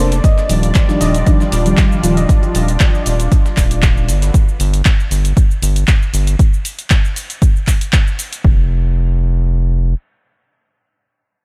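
Deep house at 117 BPM with a light swing, relaxed and soulful, this excerpt opens on an Ebmaj9 chord voiced by a smooth, detuned sawtooth pad and soft, dark FM electric piano stabs with chorus, phaser and a diffuse ambient delay, both pumping against the punchy, tape-warm electronic kick that sits up front. A round, deep bass built from square and sine waves holds down the low end through 9.9 seconds, while an analog drum machine adds cabasa, handclaps and hi-hat, and a very quiet, pitched-up breakbeat kit layers gritty hi-hat and snare underneath. A barky, overdriven tine electric piano rings a single high note in the background early on, and the chords drop out at 4.1 seconds, leaving the groove under light reverb before a new section begins at 8.4 seconds.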